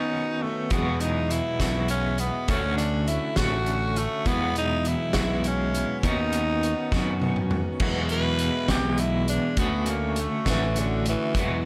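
In a straight 6/8, this nostalgic folk and heartland rock fragment pairs a growling, breathy tenor saxophone melody out front with a shimmering, octave-doubled twelve-string acoustic guitar in the background and a slightly broken-up electric guitar riff shaded by tremolo; a bright, direct fingered bass and a roomy indie drum kit with a fat snare and dark cymbals join at 0.7 s, and a drum fill at 6.9 s leads into a raspy sax solo from 7.8 s.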